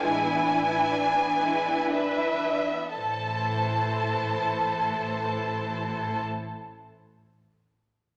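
Yearning and elegiac, this brief fragment of a slow romantic orchestral movement unfolds in triple metre with a flexible, rubato feel. The first violins carry the melody up front, their tone soft-attacked and expressive with a smooth top, while a second violin section sits farther back with a clear, even line beneath. Violas fill in the accompaniment with a rich, distant sound, the cellos supply a focused bass voice, and the double basses anchor the lowest register quietly in the background. All of the strings are bowed with vibrato, and the ensemble sound is lush. The opening passage slows down over its first 3.0 seconds as the harmony moves from an E7 over A to A minor at 3.0 seconds. A reverberant recital hall surrounds the orchestra, lending the short passage a spacious glow.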